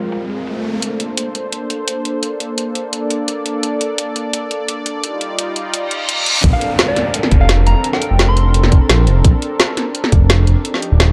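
A smooth, mellow gliding synth bass arrives up front with a tight electronic kick at the drop at 6.4 seconds in this dreamy liquid drum and bass excerpt at 171 BPM in Bb major, where a detuned sawtooth pad holds sustained chords with chorus and sidechain pumping, filtered drums bring a woody snare and metallic hats through a build-up with a filter sweep and reverse cymbal, sound effects mark the transitions, and a round, warbling FM synth lead adds brief keys-like notes with tape echo, all in a dark production with light reverb.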